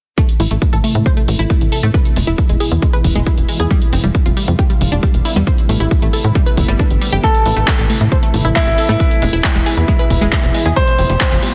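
A dense, heavily limited uplifting trance excerpt in A minor at 136 BPM, euphoric yet bittersweet, where a lush, detuned unison pluck spins arpeggios through sidechain pumping and tape echo over a heavy, up-front layered kick, dry overdriven analog claps and hi-hats, and a tight sawtooth sequencer bass with ring-modulated bite, until a clear grand piano enters at 7.2 s with a dub-echoed second line.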